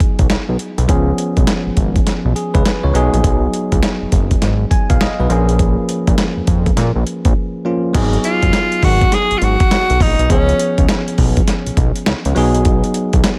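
A swung sixteenth-note groove at 102 BPM in 4/4 drives this slick, confident new jack swing cut, an excerpt taken from a longer piece in G# dorian. The dusty, sampler-style drum kit sits up front, gritty and overdriven, with a thumpy kick, a medium-tuned snare, hi-hat and crash cymbal. Beneath it, a fat analog bass with a detuned sawtooth edge, wave-folding and a filter sweep holds the low end with fast-attack, sustained notes. A bell-like tine electric piano rings out clean and direct over the G#m7, C#7, B6 and A#m7 changes. After a brief break at 7.4 seconds, a bright tenor saxophone enters at 8.2 seconds for a forceful, jazz-style solo with scooped notes, a smooth top and a touch of tape echo, dropping out at 10.9 seconds. The mix is dry and close, with every part pushed forward.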